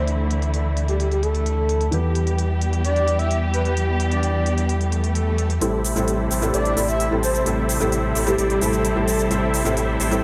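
A light reverb and a digital ambience frame this emotional, euphoric excerpt of festival progressive house, cut from a longer piece and moving in a straight 4/4. From the start, a breathy, flute-like synth lead carries the melody with lush chorus, vibrato and digital delay. Beneath it, a felt-muted upright piano with audible action noise plays a soft, intimate accompaniment. A dark, con sordino string section holds veiled, distant sustained chords under a filter sweep, while a deep, saturated sine sub bass sits up front over chords moving from Dsus2 to Em. Crisp, overdriven electronic hi-hats and cabasa, shaped by high- and low-pass filters, enter almost at once. An electronic swell arrives at 4.9 seconds, and at 5.6 seconds a huge, dense, compressed supersaw riff with cassette-tape colour, delay and its own filter sweep launches a build-up over Am7.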